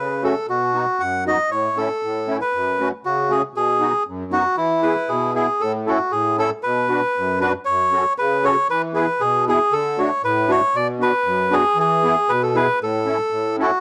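Bouncy and jolly, this short excerpt of alpine folk comes from an alpine dance band playing in a straight 2/4 at 117 BPM, cut from a longer piece. A melodica carries the melody from the start, its breathy, nasal voice with a woody mellowness sitting up front and dressed in plate reverb. Beneath it, a musette accordion supplies the accompaniment, its reedy musette tuning giving a shimmering, mid-forward sound, slightly lower in the balance than the lead. The tune opens in E major and moves to A major at 5.6 s, where a second section begins, cycling through chords such as Bm, F#m, E and D before settling on A. The production is dark and warm, with a moderate studio reverb around both instruments.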